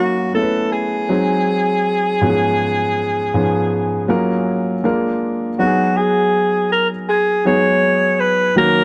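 In a straight 4/4 at 80 BPM, this silky, cinematic soul fragment sets a breathy, whispered alto saxophone melody with light vibrato and a soft attack over intimate grand piano accompaniment whose audible action noise lends a natural closeness, moving through chords such as Ab7, Db7/Ab and Gbmaj7 before turning at 5.6 s toward Abm7, inside a light reverb.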